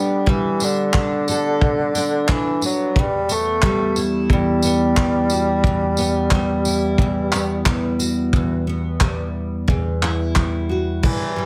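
A bassoon with a classical-style vibrato carries the melody over a picked, full-bodied steel-string dreadnought guitar, double-tracked and set in plate reverb, while the bassoon's roomy tone picks up both plate reverb and tape echo. This carefree, sunny acoustic pop fragment moves at an easy 89 BPM in straight 4/4, shifting from Gadd9 to Emadd9. From 0.3 seconds a soft brush kit joins with a tight kick, tambourine, handclaps and a crash cymbal, its small-room sound warm with a rolled-off top, before a new section begins at 8.3 seconds.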